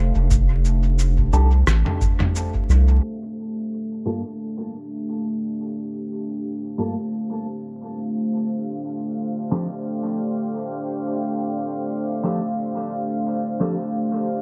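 Hazy and spacious, this ambient dub fragment opens on a deep, detuned pad holding sustained chords throughout, joined briefly by a round, nasal analog bass and a tape-warm electronic kick alongside a muffled, overdriven sampler-style kit of cabasa, rim click and toms, with the bass falling away at 3.0 seconds. A dark, clean electric guitar places phased, filtered stabs soaked in dub echo from 1.3 seconds, while a filter sweep runs from 3.0 seconds to the end and vinyl crackle hangs over the echo-heavy mix.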